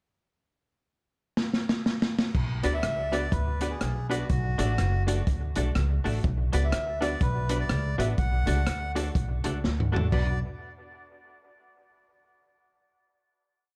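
A dark, warm studio production with light reverb frames this short, complete ska piece in B minor, driving and mischievous at 123 BPM with a swung 4/4 feel. A vintage drum kit opens with a fill at 1.4 seconds, its muffled, lo-fi sound sitting up front with a punchy kick, medium-tuned snare, dark cymbals and a side-stick backbeat in the ska beat. Upright bass enters at 2.3 seconds with a woody pizzicato walking line, just as the chords move through Bm, D and back to Bm. From 2.6 seconds a reedy, breathy melodica carries hook phrases through dub echo. Alongside it, a clean, hollow-bodied semi-hollow electric guitar chops the off-beats, and a detuned, jangly honky-tonk upright piano adds short off-beat stabs, also with dub echo. A second drum fill leads into the final chord that closes the piece.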